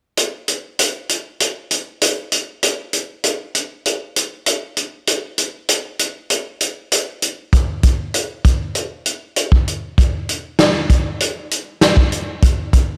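A vintage acoustic drum kit opens this short rock passage at 0.2 s, playing on its own in a straight 4/4 at 98 BPM. The mood is trippy and mysterious, cut from a longer piece and carried entirely by hi-hat, kick drum and snare drum. The kick is punchy, the snare sits at a medium tuning, and the kit has a natural studio-room character with a rolled-off top end. Placed up front in the mix, the drums feel close and rounded rather than bright. A light reverb gives the recording a touch of space around the kit. The drums run through to 12.9 s, holding a single section for the length of the clip.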